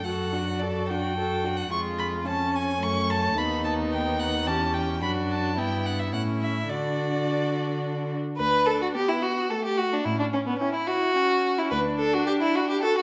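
In a 3/4 at 108 BPM with a straight feel, this spirited, graceful classical-period movement for string quartet unfolds in D major, cut from a longer piece. A clear, up-front first violin carries the melody high above the ensemble, its bowed line smooth and even with vibrato. Beneath it, the second violin, viola and cello share a rich, vibrato-touched tone: the second violin weaves a second line from a distant position, the viola fills in the accompaniment further back, and the close cello anchors the bass. The opening phrase travels through shifting inversions and minor chords before settling on D at 6.7 seconds, and a new section at 8.4 seconds turns to a simpler D and A7 harmony. The cello drops out at 12.2 seconds while the upper strings continue to the end, all wrapped in the glowing reverb of a recital hall.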